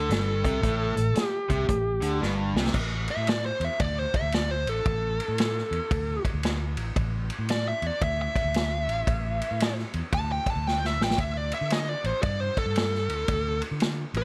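Blues rock power trio with a southern rock edge, this heavy, brooding, swung clip opens with a dark, smooth overdriven lead guitar melody over a bright, double-tracked riff from a cranked stack guitar, which stops at 2.7 seconds, when a drum fill hands over to the lead guitar's solo that runs to the end. Underneath, a growly fingered electric bass and a vintage drum kit with a punchy kick, medium-tuned snare and dark cymbals sit up front, with another fill at 10.7 seconds before the chords move to D5. Light reverb and small room ambience frame the mix.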